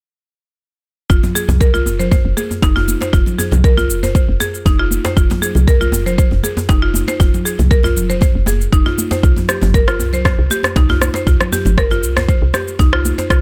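From 1.1 seconds, a deep, up-front electronic kick, a layered electronic shaker and rim click, a soft, round, dark FM bass with sidechain pumping, and a buzzing hardwood marimba playing dry arpeggios with tape echo and its own sidechain pump set up this earthy, hypnotic afro house groove at 118 BPM in F minor, joined at once by bright, saturated, high-tuned congas and a deep djembe with metal rattles, both struck with hard hands in a small room, as the harmony moves from F5 to C5 at 9.2 seconds in this cut from a longer piece.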